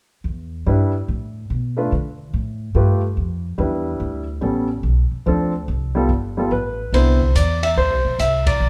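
Jazz piano trio in a swung 4/4 with a warm, sophisticated mood, cut from a longer piece: a woody, thumpy pizzicato upright bass opens at 0.2 seconds, an intimate concert grand with audible action noise and long sustain carries the melody over chords such as Em7, G9 and Cadd9, and a dark, smooth drum kit with boomy kick, hi-hat and ride enters at 6.9 seconds ahead of a band accent at 8.4 seconds, the trio playing live together in one room with a large studio reverb.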